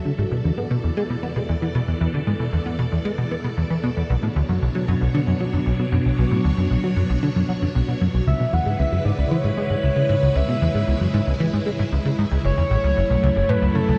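A straight 4/4 pulse at 115 BPM drives this mysterious, expansive fragment of sequencer-driven space music in B dorian, where a punchy, funky analog bass riff with a plucky filter, chorus and tape echo sits up front under swirling, vintage string-machine chords thickened by ensemble chorus and phaser. The harmony moves from E7sus4 through Bmadd9 and C#m7 to F#m7, and at 8.3 seconds a shimmering pulse-width lead enters with a retro, vibrato-laced melody coloured by chorus, cassette tape and tape echo. A huge, wet reverb with a 7.1-second tail gives the dark production its sense of vast space.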